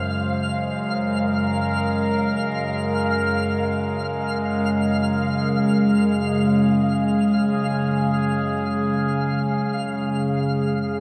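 Drenched in a wet spring reverb, this luminous ambient fragment in free time rests on a single Bbm7/Gb chord held by an up-front, warbling tape-like pad with a nostalgic, lo-fi, chorused glow, while a softer granular texture sparkles above it with an octave-up shimmer throughout its 11 seconds.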